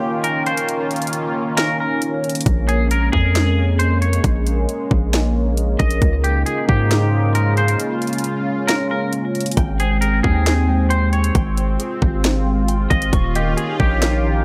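A half-time trap beat at 135 BPM in 4/4 drives this melancholic, ethereal cloud-rap excerpt in Bb dorian, its overdriven kit up front with a hard-clipped kick, sharp snare and bright hats, while a deep, long 808-style bass enters at 2.5 s under chords moving from Eb7 through Bbm7, Db6 and Abmaj7. A detuned sawtooth pad sustains throughout with sidechain pumping and chorus, and a clean, twangy electric guitar carries the melody through lush chorus, delay and a low-pass filter. A dark, mellow second guitar sits in the background with spring-reverbed arpeggios from 9.6 s, all set in a light digital ambience.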